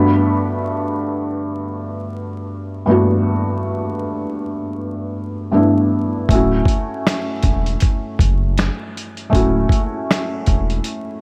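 A layer of vinyl crackle and light reverb frames this short, dreamy lo-fi hip hop clip at 79 BPM in 4/4, with a gentle swing on the sixteenths and tuning set to A4 = 439 Hz. A felt-muted upright piano opens alone at 0.0 seconds with a fill, its soft, mellow tone sitting up front and intimate, with audible action noise and a cassette-tape, low-pass coloring that deepens the nostalgic mood. The harmony rests on Gmaj9 before moving to Dmaj9 at 6.3 seconds, where a sampler-style drum kit and a saturated sub bass join in. The drums carry 12-bit grit and a compressed, tape-warm character, with a thumpy kick, medium-tuned snare, hi-hat and finger snaps that sound re-recorded in a small room. Beneath them, the sub bass holds deep, thick sine notes with a fast attack and long sustain, grounding the piano's hazy chords until it drops out just before 11 seconds, shortly before the clip ends at 11.2 seconds.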